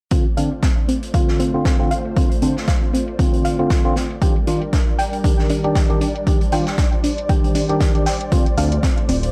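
Deep house in a deep, moody vein, this short excerpt sets a punchy, overdriven electronic kick and metallic electronic hats over a gritty vintage kit's hi-hat and snare, while a clean tine electric piano stabs through a low-pass filter and delay, a soft, round pluck spins dark, filter-swept arpeggios in the background, and a detuned analog pad holds mellow chords from Dm7 to Ebmaj7 and back, all pumping against the kick until a smooth gliding synth bass slides in at 8.6 seconds under light reverb.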